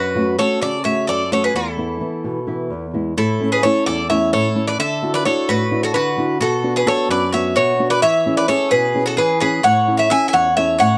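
Joyful and bright, this Greek folk excerpt for bouzouki band dances along in a straight 7/8. Up front, a picked bouzouki carries the melody with metallic double strings, some doubled at the octave. A quieter bowl-back mandolin adds a second line on its own paired strings, while a dark, thumb-plucked flamenco guitar sits forward with the accompaniment. Close, detailed microphones and light reverb keep the trio intimate as the harmony moves from F#m and E5 into a new passage at 3.2 seconds, running A, Dadd9, Bm and E6 before returning to A.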